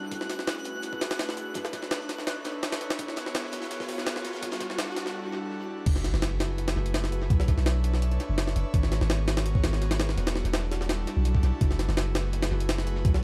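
An echo-heavy mix with light reverb and a bed of vinyl crackle frames this dark, atmospheric slice of drum and bass and jungle, cut from a longer piece and moving at 167 BPM in F# minor. An airy, breathy pad with chorus holds sustained minor eleventh chords throughout, cycling from F#m11 through Bm11 and G#m11 to Em11, while a twinkling granular texture with its own reverb sparkles in the background on a high F# until 5.1 seconds. The opening build-up sets a compressed, pitched-up jungle sampler-style kit, gritty and tape-warm with a thumpy kick, against a very quiet, saturated breakbeat kit with a rolled-off top, as a filter sweep and a background riser gather toward a brief break at 5.1 seconds. The drop arrives at 5.9 seconds with an impact, and a deep, mellow sine-based 808-style bass moves up front, holding long decaying notes low in the register. The sampler kit carries on to the end with kick, crash, hats and snare treated by high-pass filtering, studio reverb and tape echo.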